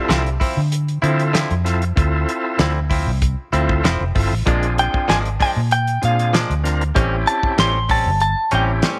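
Studio reverb surrounds this brooding, soulful straight-eighth soul blues fragment in D minor at 96 BPM, where a raspy, very quiet tenor saxophone growls only until 0.7 s, a thick, overdriven tonewheel organ with key click and slow rotary speaker carries the accompaniment over Dm9, Bb7 and A7#9, an up-front, compressed, clean direct-recorded electric guitar adds stabs with slapback echo, a round, foam-muted vintage bass and a damped 70s drum kit with a fat snare and tight kick sit up front beneath them, and from 4.8 s a bright, twangy second direct-recorded guitar carries the melody.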